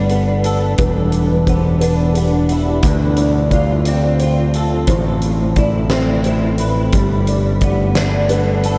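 A growling, overdriven fingered electric bass sits up front in this brooding, cathartic post-rock passage in A minor, moving slowly at 59 BPM in 6/8 through Gadd9, Em7, Dm7 and Amadd9. A huge arena drum kit joins at 0.1 s with a fat snare, punchy kick and hi-hat, while a clean, compressed electric guitar plays arpeggios through ensemble chorus and diffuse ambient delay, and a soft, felt-muted upright piano with audible action noise adds its own arpeggios in the background. Beneath them a deep, detuned sawtooth pad holds sustained chords with a slow attack, and the whole dreamy mix is soaked in a cathedral reverb in this 8.8-second cut from a longer piece.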